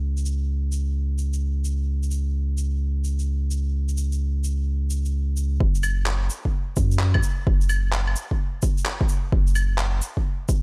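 A round, deep sub bass sits up front from the opening, its sine tone sustaining with a fast attack and a mellow, pumping sidechain feel. This is a wistful, rainy future garage excerpt at 129 BPM in 4/4, with a 64% swing on the sixteenths. Electronic shaker, cabasa, claves and handclaps come in at 0.2 seconds, forming a layered, produced percussion bed sitting lower in the mix. At 5.6 seconds a punchy electronic kick drum joins, up front alongside the bass, marking the move into the second section. The bass drops out at 10.0 seconds, leaving the kick and percussion to carry the final moments inside a digital ambience.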